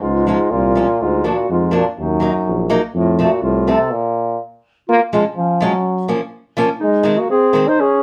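A clear euphonium carries the melody with light vibrato and a distant, roomy presence, joined by a dark, smooth-topped clarinet on a second line and a mellow, soft-attacked tuba on the bass, all in classical style, in this bouncy, festive excerpt of alpine dance-band folk at 124 BPM in 2/4. A boxy, fingerpicked old ladder-braced acoustic guitar, with audible finger squeak, comes in up front as accompaniment. The tuba drops out at 3.7 seconds, the band breaks for a stop from 3.9 to 4.9 seconds, and then settles into D-flat major for the closing section, all captured live in one room with moderate studio reverb.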